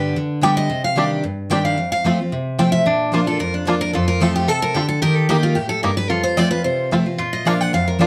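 A full-bodied picked acoustic guitar opens this lively, virtuosic bluegrass fragment with up-front accompaniment, and within a moment a twangy, percussive fingerpicked banjo and a second, bright picked guitar carrying audible finger squeak join to share the melody. At 2.9 seconds a lap resonator guitar enters with a metallic, nasal slide line, as the chords move from G and Cmadd9 through F, Bb and Eb before settling on Bb, all in a moderate studio reverb.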